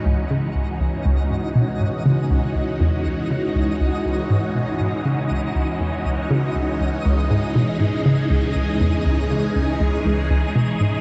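Ambient, sequencer-driven space music in C# minor at 120 BPM, cosmic and expansive and cut from a longer piece, where a hollow, bouncy, detuned square-wave pluck riff sits up front in the low register with chorus and analog delay, a filter sweep moves across the synth arpeggio sound from 0.0 to 11.0 s, a swirling, vintage sawtooth string machine holds bright, slow-attack C#madd9 chords through ensemble chorus and phaser, and a sparkling FM granular texture twinkles above with an octave-up shimmer and long release, the whole mix set in a vast, echoing space with a 7.2-second reverb tail and cassette tape character.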